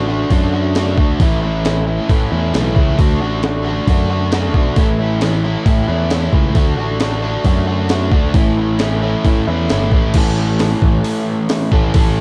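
An overdriven electric guitar and a picked electric bass open this carefree, jangly indie rock excerpt together, with a sampler-style breakbeat kit joining at 0.3 seconds. The double-tracked guitar sits up front, its bright, compressed riff moving back and forth between D and A. Beneath it, the bass has a growly, direct-and-amped character in its low register. The drums sound gritty and re-recorded in a small room, pairing a thumpy kick and high-tuned snare with hi-hat and crash cymbal. The sound is dry, with little reverb, and it carries the warbly pitch drift of worn old cassette tape. At 10.2 seconds the music moves into a new section before the excerpt cuts off, as part of a longer piece.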